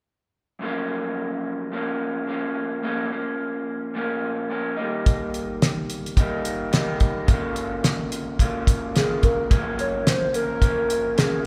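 Sunny and laid-back, this indie and bedroom pop piece opens at 0.6 seconds with a dark, slightly broken-up electric guitar through a small old amp, picked with a lo-fi vibrato over a swung feel and chords moving from Gbmaj7 through Bbm, Eb and Db6. A cloth-damped, thuddy drum kit joins up front at 5.1 seconds with a fat snare and tight kick. At 9.0 seconds a hollow, woody, clarinet-like synth lead takes the melody, its soft square-and-triangle tone colored by chorus and phaser, all set in a moderate church reverb.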